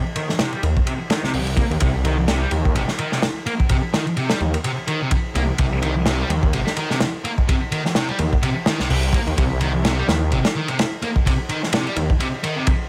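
A swung 16th-note groove at 127 BPM in 4/4 drives this swaggering, raw breakbeat cut, taken from a longer piece and sitting on C minor throughout. A crunchy, gritty acoustic kit of tight kick, medium-tuned snare, hi-hat and dark ride cymbal sits up front with a rolled-off top, while a thick, detuned saw bass with a menacing, beating tone enters at 0.6 seconds, saturated through tube warmth. Over them, a bright, double-tracked fuzz guitar picks a low riff coated in distortion, 12-bit sampler grit, a low-pass filter and digital delay, all set in a small room ambience.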